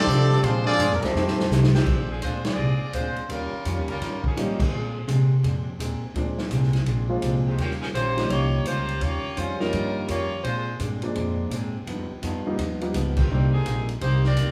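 Swinging and joyful, this big band swing excerpt moves at a brisk 168 BPM in 4/4 with swung eighths, centred in Bb mixolydian over rich ninth chords. A clear trumpet section carries the opening melody up front, with a light-vibrato trombone section tucked in the background on a second line and a very quiet, mellow saxophone section holding smooth sustained chords beneath; the brass drop out at 1.5 s. A drum fill from 1.2 s leads into the second section, where an edgy saxophone section with a present, vibrato-rich tone takes over the melody from 1.8 s in recurring phrases. Throughout, a woody pizzicato upright bass sits up front, while a punchy, natural-sounding drum kit drives the groove with ride, hi-hat, snare, kick and crash, punctuated by full-band accents. A dark, clean hollow-body archtop guitar comps quietly, and a grand piano with long sustain joins the accompaniment partway through. 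The band sounds like it is playing live in one room, with small-room ambience wrapped in a lush studio reverb.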